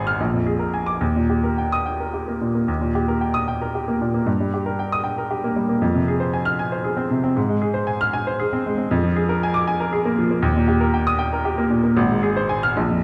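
Set in 6/8 at 77 beats per minute counted in dotted quarters, this classical virtuoso piano study moves with a flexible rubato feel, pushing and pulling against the pulse. In Eb major, the short passage, cut from a longer piece, carries a sparkling, heroic mood. A clear baby grand piano plays alone for the full 13 seconds, reaching from Ab1 in the deep bass up to F6 in the high treble, its natural tone placed up front with a short sustain. The harmony opens on Bb7 before settling on Eb, then passes through Eb/G, Fm and Fm/Ab, leans on Bb7/F, returns to Eb around 10.4 seconds, and closes on Fm/Ab. A wet recital hall reverb surrounds the instrument, and the overall production leans dark and warm.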